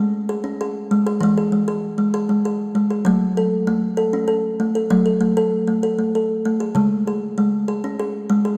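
A meditative world piece of tuned percussion in a gentle 3/4, this short excerpt features a solo kalimba, its woody, hollow-box thumb plucks sitting up front in a wet echo chamber with a long 2.4-second reverb tail, moving through C#5, E and F#m before returning to C#5.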